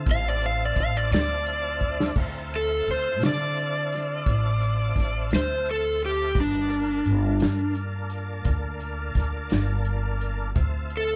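Light reverb gives this slow blues the feel of a band playing live together in one room, and the mood is smoky and soulful, cut from a longer piece. It moves at 57 BPM in a straight 12/8 in D minor, with the harmony settling on Dm7 before shifting to Gm7 at 6.4 seconds and returning home. An overdriven electric slide guitar, dark and fingered, sits up front and carries the melody, opening with a solo that runs until 2.2 seconds. A drum fill from 1.8 seconds leads into the next section, where the acoustic soul kit, with its tight kick, medium-tuned snare, dark cymbals and small-room character, keeps the groove smooth. Underneath, a pizzicato upright bass with steel strings adds a woody, thumpy low end that also sits up front. A clean, warm tonewheel organ holds sustained chords further back, colored by chorus vibrato and a slow rotary speaker.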